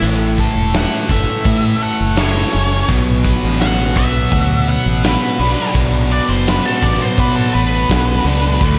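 Light reverb and a small-room ambience surround this short, sunny and driving classic rock clip, cut from a longer piece, in a straight 4/4 at 84 BPM, moving from A to B minor at 2.9 seconds. A dark, fuzzy octave-fuzz lead guitar carries the melody as a distorted solo throughout, over two bright, picked overdriven guitars playing riffs: one biting, the other touched with slapback echo. Underneath, a round, punchy fingered electric bass sits up front, while a big acoustic rock kit of kick, medium-tuned snare and hi-hat, with a rolled-off top, drives the groove.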